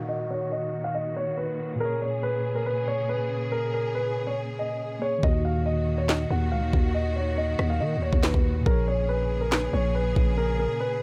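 A dark, mellow grand piano carries the melody at the start of this menacing hip hop drill excerpt at 140 BPM in a half-time feel in Eb minor, backed by a clean tine electric piano and a lush, bowed string section with vibrato, each low-pass filtered under a filter sweep, while a very quiet electronic downlifter plays until 1.8 seconds; then at 5.2 seconds a growling, buzzy 808-style bass and an electronic drill kit with a knocking kick, sharp snare, handclaps and rim clicks enter up front in a dry, close-sounding mix.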